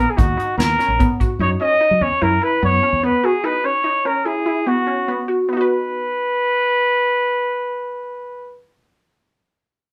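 A mellow, vintage-toned trumpet carries the classical-style solo melody up front through this driving, intricate progressive instrumental fragment in 5/4 at 147 BPM in B major, moving from Bmaj7 to F#7sus4 before settling on B. Beneath it, a glassy, crystalline wavetable pluck with chorus spins bright, detuned arpeggios for the whole passage, while a soft brush drum kit with a fat snare and tight kick appears only from 0.2 to 1.3 seconds. A fingered electric bass, direct and amped, plays until 3.1 seconds, and the band sounds captured live together in a small, reverberant room.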